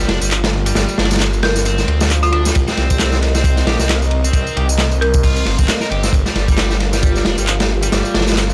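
A dark, moody analog pad, a sludgy overdriven guitar riff and a thick, swirling detuned saw bass open this raw, gritty breakbeat excerpt at 134 BPM in G minor, with the drums landing at 0.1 seconds. The pad sits deep in the background, its sustained chords coloured by chorus, phaser, sidechain pumping and vintage 12-bit sampler grit, while the double-tracked guitar is bright and picked through tape echo. The up-front bass carries a phaser and saturation. The crunchy acoustic kit has a tight kick, medium-tuned snare and dark cymbals with a rolled-off top, swinging on the 16ths alongside a layered electronic tambourine and handclaps. A woody, rustic marimba struck with hard mallets plays a short melody from 1.4 to 5.2 seconds, filtered to an AM radio tone with tape echo. The chords move from Gm7 to Cm7 and back in a dry hardware recording dusted with vinyl crackle.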